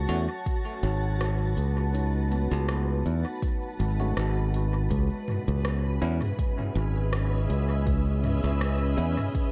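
Deep and meditative, this ambient dub excerpt sets a growly, punchy fingered electric bass and an overdriven, layered kick up front, with crisp hats, rim clicks and toms from an electronic kit sent through dub echo in a large room. A blurred, detuned granular pad drifts through its own reverb while a barky, bell-like tine electric piano stabs through dub echo in the background. A ringing stainless-steel handpan plays arpeggios through analog delay from 0.8 to 6.0 seconds, as the harmony moves from F#m to C#m7 at 4.9 seconds in an echo-heavy digital ambience.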